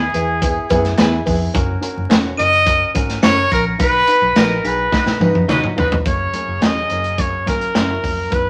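Uptempo 1960s-style soul in 4/4 at 106 BPM, joyful and warm, tuned slightly flat of standard pitch and cut from a longer piece, moving through E, F# and B before settling back on F#. An up-front trumpet carries the punchy, pop-style melody with light vibrato, while a glockenspiel struck with brass mallets adds a sparkling, bell-like second line in the background until 5.2 s. A woody upright piano with short sustain supplies the accompaniment, anchored by a dark, round, foam-muted fingered electric bass and a gritty, saturated breakbeat drum kit with a tight kick and rolled-off top, backed by very quiet tambourine and handclaps. A twangy, picked electric guitar adds clean stabs from 1.0 s, and a tight, jazz-style horn section joins the second line in the background at 4.9 s, just as a drum fill arrives under a band accent. The whole sits in a wet studio reverb with vinyl crackle for a vintage record feel.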